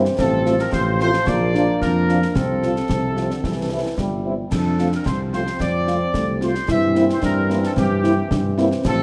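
Proud and spirited, this military-style march for wind band moves at 111 BPM in a straight 2/4, set in F major and cut from a longer piece. A warm trumpet section carries the melody from 0.2 seconds, its light vibrato sounding distant and roomy. Beneath it, a dark euphonium sings a second line in the background, a mellow French horn section adds vintage-toned accompaniment until 8.7 seconds, and the trombone section holds sustained chords with a soft attack and a present, tight sound. A mellow tuba anchors the bass with light vibrato, while concert snare drum, clash cymbals with dark cymbals and concert bass drum sit close and dry from 0.1 seconds. The harmony moves from F/A through Bb, F/C and C to F before settling on C7/G, all heard in a moderate concert hall reverb through close, detailed microphones.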